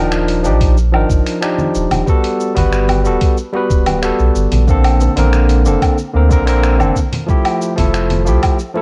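Sunset chillout at 92 BPM in a blissful, smooth straight 4/4, this short excerpt from a longer piece sets a barky, up-front tine electric piano, treated with cassette tape, tape echo and plate reverb, on lush Ebmaj9, Gmaj9, Bbmaj9 and Fmaj9 chords over a round, deep sine sub bass, while a gritty, compressed sampler-style soul kit of finger snaps, hi-hat, shaker and woodblock, a knocking, tape-warmed electronic kick from 0.6 seconds and softly played, saturated bongos and congas in the background fill out a homespun cassette recording with light reverb.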